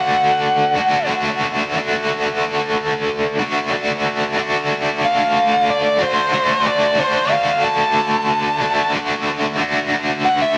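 A straight 4/4 pulse at 92 BPM drives this hypnotic, mysterious rock fragment in D major: a bright, double-tracked overdriven electric guitar sits up front, picking a riff with tremolo throughout, while a dark, smooth lead guitar, overdriven and run through wah and tape echo, plays a solo melody from 0.0 to 1.1 seconds and again from 5.0 to 10.6 seconds, the whole set in light reverb and digital ambience.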